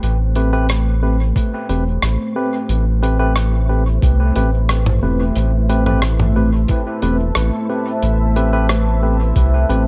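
A straight 4/4 groove from a small-room soul drum kit of hi-hat, rim click and toms, sent into dub echo, carries this deep, spacious ambient dub excerpt over a round, up-front analog bass and a dark, detuned pad holding an Am9 chord, while a clean tine electric piano adds dub-echoed stabs from 0.4 s, a muffled, thumpy sampler-style kick joins at 1.4 s, and a resonant, bubbling stepped-filter texture sits in the background from 3.5 s.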